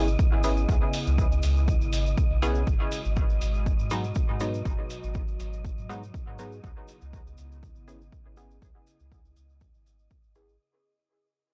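A dry, gritty hardware sound with transformer saturation and digital ambience frames this cavernous, deep dub techno excerpt, cut from a longer piece at 121 BPM in straight 4/4, tuned to A4 = 437 Hz and fading out across its full 10.6 seconds over chords moving from C#m7 to G#m7 and back. A punchy, tape-tinged kick sits up front with studio reverb, a grainy acoustic tube shaker comes in at 0.1 seconds, a muffled, pitched-down hi-hat under a low-pass filter follows at 0.4 seconds, and a round, soft sub bass anchors the low end. Muted sawtooth chord stabs with chorus, phaser and dub echo float over a warbling, nostalgic, detuned pad and a breathy, wind-like noise texture held on D#5, with bass, stabs, pad and texture all pumping to the sidechain.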